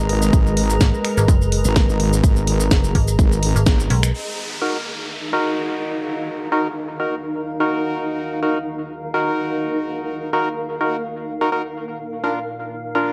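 A dark, lightly reverberant production frames this aggressive, swaggering bass house excerpt in Eb minor at 126 BPM, with a slight swing on the sixteenths. The opening drop pairs a heavy, saturated wobble bass with a metallic FM bass driven by overdrive, both pumping against a punchy, tape-warm electronic kick. Alongside them, a house kit of finger snaps, hi-hat and cracking snare, filtered and re-recorded in a large room, joins grainy maracas, and the band hits an accent at 3.7 seconds. Throughout, a deep, moody analog pad holds sustained chords beneath a cloudy, evolving granular pad bathed in its own reverb, both breathing with sidechain pumping. By 4.1 seconds the basses and drums fall away, a downlifter arrives and a filter sweep moves across the analog pad. A hollow, organ-like stab then enters, coloured by ring modulation, cassette tape and tape echo, as the harmony moves from Abmadd9 to Ebm and finally to Bb.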